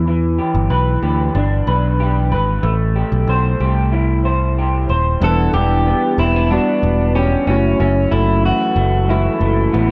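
Lonely and hazy, this short indie pop piece, cut from a longer work, moves at an unhurried straight pulse in four. From the start, a dark, slightly broken-up electric guitar through a small old amp lays down the accompaniment, its chorus carrying a warbly pitch drift, while a round, direct picked electric bass sits up front beneath it. At 5.2 seconds a second amp-driven guitar enters with the melody, picked and lo-fi with a gentle break-up, treated with subtle chorus and dub echo. Warbling lo-fi synth keys arrive at the same moment, mixing square and sawtooth tones with a filter sweep and a fast, decaying attack that give them a nostalgic, vintage glow. Harmonies shift from Em7 to Am7, back to Em7 and then to F#m7, and the echo-heavy mix with light reverb wraps the parts in a soft, distant haze.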